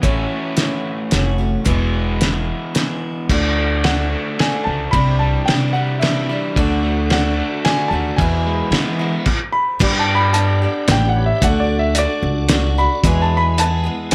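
Light reverb colours this jangly folk rock and heartland rock fragment in 3/4, built on a boxy, picked swing-style acoustic guitar, a double-tracked crunchy overdriven guitar riff that drops out at 9.3 seconds, woody pizzicato upright bass and a muffled, lo-fi cloth-damped drum kit with a fat snare and dark cymbals; a warm concert grand piano with slapback echo and audible action noise carries the melody from 3.8 seconds, and from 6.5 seconds a piping tonewheel organ with slow rotary speaker sits in the background, joined at 6.6 seconds by a very quiet, brilliant upright piano.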